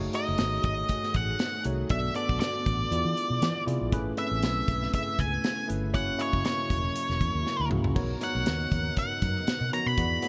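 Urban and bittersweet, this excerpt of polished 1980s jazz-funk pop moves at 119 BPM with a light sixteenth-note swing, built on a worn, slightly out-of-tune tine electric piano with subtle chorus, a silky, warbling string machine sustaining chords very quietly beneath, and a round, foam-muted fingered bass. A tight, dark studio drum kit with a rolled-off top carries the groove, while an up-front octave-fuzz lead guitar sings the melody through distortion and delay over chords moving from F#m69 to Bmaj9. After a drum fill at 7.5 seconds, high-tuned, distant congas enter at 8.0 seconds, all set in light reverb and bright digital 1980s-style production.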